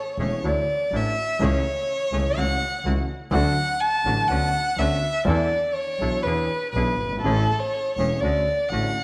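This tango excerpt moves at 123 BPM in 4/4 with a rubato feel in A major, its mood melancholic and tense, as a dark, up-front bowed violin sings the solo line from 0.0 to 9.0 seconds with soft attacks, vibrato and expressive portamento. Underneath, a grand piano with audible action noise accompanies through chords such as Dadd9, F#m7/C#, E7sus4 and Amaj7, while a reedy, boxy bandoneon adds stabs in the background. A clear, intense bowed double bass sounds distant with its own vibrato, and a wet echo-chamber reverb with a 1.8-second decay surrounds the ensemble.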